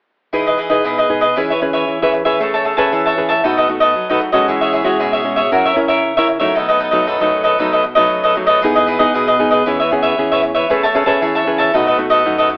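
Joyful and sunny, this samba snippet sets a crisp, bright picked cavaquinho and a fingerpicked classical nylon-string guitar up front over chords such as Emaj7, Amaj9 and B7, while a deep, clean sine sub bass enters in the background at 8.6 s, and the recording carries a telephone-like tone inside a moderate large-studio reverb.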